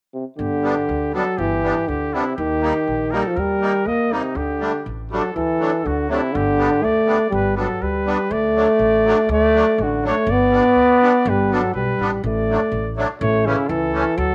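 A punchy, vintage-toned euphonium carries the melody up front in this festive, bouncy excerpt of alpine dance-band folk in a brisk 2/4, entering first at 0.1 seconds with a warm, classically styled solo voice. Just behind it at 0.4 seconds, a clear trumpet adds a second line with light vibrato, a soft attack and a smooth top, also played in a classical manner. The upright bass joins at the same moment, its pizzicato notes woody and dark on steel strings. A reedy musette accordion fills in the accompaniment with a shimmering, airy quality from its musette tuning. Around 8.3 seconds the piece moves into a new passage with fresh harmony, and light reverb and studio ambience give the ensemble a natural sense of a real room.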